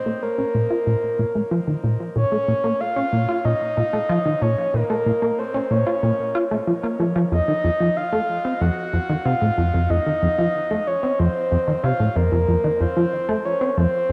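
Drenched in a long spring reverb and echo with a cassette-tape haze, this brief ambient clip feels expansive and mysterious. A soft, breathy flute-like synth lead carries the melody with gentle vibrato and chorus, while a punchy, funky analog bass with a sawtooth bite plays a plucky, decaying riff beneath it, both sitting up front through the whole 14.1 seconds. The harmony rests on B-flat minor before moving to F at 7.3 seconds.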